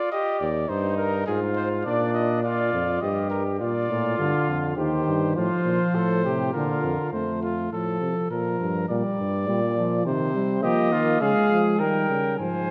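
A mellow trumpet carries the melody over a flugelhorn second line with light vibrato and a distant, roomy tone, and a soft-attacked bass trombone joins almost at once, in this lively, joyful classical canzona for brass ensemble at 103 BPM in a straight 3/4. A warm euphonium with a smooth top enters at 3.9 seconds as accompaniment, and the imitative writing moves through chords such as Eb, Fm/Ab, Bb and Cm before the flugelhorn rests from 7.1 to 10.6 seconds and the music turns toward F, Db and Eb. Every part is in classical style and up front, set in the wet bloom of a scoring stage reverb, and the passage is cut from a longer piece.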